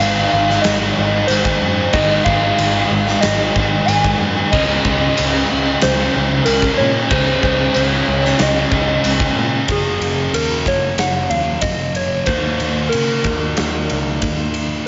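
Shoegaze and dream pop rock with a hazy, dreamy mood, cut from a longer piece, where a gentle, keys-like FM synth lead with chorus, vibrato and digital delay carries the melody over three picked electric guitars: a biting overdriven one with reverse reverb, a cranked, double-tracked stack guitar in the background that drops out at 9.7 seconds, and a thick fuzz guitar with lush chorus sitting further back. A dark, round, foam-muted vintage bass and a huge, up-front arena drum kit with punchy kick, medium-tuned snare and bright cymbals in a pumping hall drive it along, while a jingly tambourine sits in the background until 9.2 seconds. The chords move into a new section at 9.7 seconds, and light reverb with small room ambience surrounds the mix.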